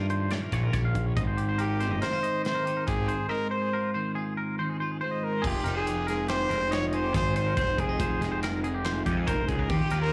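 Moving in a straight 5/4 at 140 BPM, this bright, playful math rock and midwest emo excerpt, heard as a live gig through a club PA, sets a bright twelve-string electric guitar and a twangy, scooped electric guitar playing tremolo-and-slapback arpeggios over an up-front fuzz-overdriven picked bass and a modern studio drum kit with a punchy kick, while a clear, vibrato-laden trumpet with slapback echo enters at 1.6 seconds to carry the melody through a break at 3.3 seconds and chords moving from Eb9 to Fm9.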